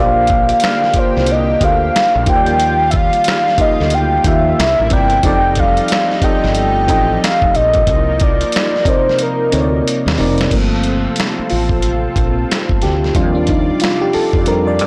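A mellow, horn-like synth lead with vibrato carries the melody of this smooth neo-soul R&B excerpt at 91 BPM, its soft-attack sawtooth tone riding a 16th-note swing until it stops at 9.9 seconds. Beneath it, a glassy FM electric piano with a bell-like attack and warbling chorus plays accompaniment, then takes a solo from 10.5 seconds over Gm11 and Ebmaj13 chords. A lush, airy unison pad holds sustained chords in the background, while a woody fretless bass with a growly, round, hollow-body character anchors the low end. The sampler-style drum kit sits up front with a thumpy kick, a gritty compressed snare with soft clipping, hi-hat, finger snaps and crash cymbal, and plays a fill from 9.2 seconds. The recording has light reverb and a blown-out, overdriven sound, with the harmony moving through Bb6, Ebmaj9, C9, F13 and Cm9 before the solo.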